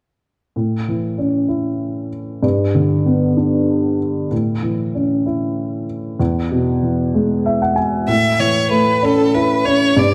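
A wet recital-hall reverb wraps this tender, swaying pop fragment in 6/8 at 64 BPM in A major, where a dark, woody upright piano with audible action noise and long sustain carries the accompaniment from 0.6 seconds, adds a fill at 7.1 seconds, and is joined at 8.1 seconds by a rich, smooth solo violin melody with vibrato and slapback echo, both parts sitting up front.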